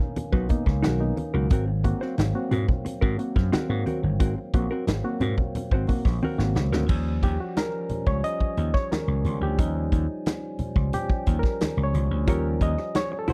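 A dry, close recording in a 1970s studio style carries this playful, strutting funk passage at 89 BPM in Eb mixolydian, cut from a longer piece. A punchy, up-front drum kit and amped slap bass drive it, with low-tuned congas in the background, sustained chords on a fat tonewheel organ through a slow rotary speaker, and a dark, clean hollow-body jazz guitar comping until 6.9 seconds and returning briefly at 12.3 seconds. After a drum fill, the barky, lightly overdriven reed electric piano with spring reverb moves from stabs into a solo at 6.9 seconds as the harmony shifts from Bmaj7 and Ab9 to Eb9.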